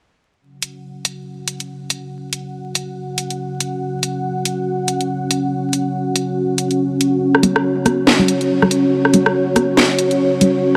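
A swung, half-time 4/4 groove anchors this short, dark and meditative deep dubstep excerpt, with a garage drum kit of hi-hat, rim click and a cracking snare sitting up front from just after the start. The kit sounds electronic, layered and tape-warm. Alongside it, a dark analog pad enters at 0.4 seconds, just ahead of the kit, holding sustained chords built from detuned sawtooth and triangle tones with a sub octave, a slow attack and a long release, colored by chorus and a gritty vintage 12-bit sampler texture. Congas join at 7.4 seconds, close and dry under hard hands, trailed by dub echo. Light reverb and a layer of vinyl crackle give the whole recording a moody, dusty atmosphere.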